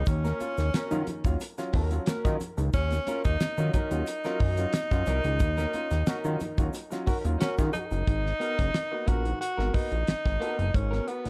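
A dark, nearly reverb-free excerpt of cool, hypnotic funk at 90 BPM in Eb minor, moving from Ebm7 to Abm9 at 8.1 seconds. Up front, a tenor saxophone with vibrato and scooped notes carries the jazz-style melody over a fat, detuned sawtooth analog bass with a filter sweep and a damped 70s drum kit with a tight kick. An electric guitar at the edge of break-up adds picked, compressed accompaniment, a brilliant upright piano plays woody stabs with plate reverb in the background, ringing high-tuned congas and a grainy tube shaker sit in the background until about 8 seconds, and a mellow trombone adds a brief second line on Gb4 from 6.1 seconds during a band accent.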